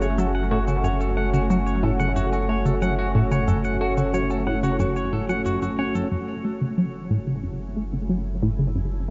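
A tight, driving sequenced synth riff anchors this ambient space-music excerpt at 91 BPM in F# minor, its detuned sawtooth tone plucked by a filter and coloured with chorus, phaser and analog delay. Beneath it a round, deep analog bass holds a low F#1, while a sweeping resonant pad sustains evolving chords that bloom through a slow filter swell and carry a sub octave and chorus. A clean, twangy electric guitar plays fingered arpeggios with analog delay, and a tape-toned shaker and woodblock sit far in the background. At 6.1 seconds the guitar and percussion stop and the harmony moves from F#m to F#m7, leaving the synth, pad and bass to hold the hypnotic, expansive mood. The whole mix is bathed in a huge, wet reverb with a dark production that keeps the highs rolled off.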